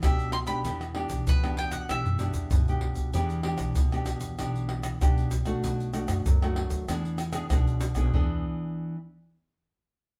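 A bright, picked bowl-back mandolin opens this bittersweet, nostalgic piece of samba and choro, its doubled strings carrying the melody over a fingerpicked classical nylon-string guitar and a woody, pizzicato upright bass. Sitting up front, a tight surdo, pandeiro, tamborim and tube shaker are played with soft hands, giving the straight four-beat feel an intimate, small-room character. A drum fill arrives at 1.9 seconds, and the mandolin drops out at 2.8 seconds, leaving the warm guitar and steel-strung bass to carry the harmony with the percussion. The percussion, bass and then the guitar fall away, the guitar lasting until 9.0 seconds. The band plays together live in one room, wrapped in a wet studio reverb, and the recording is cut from a longer piece.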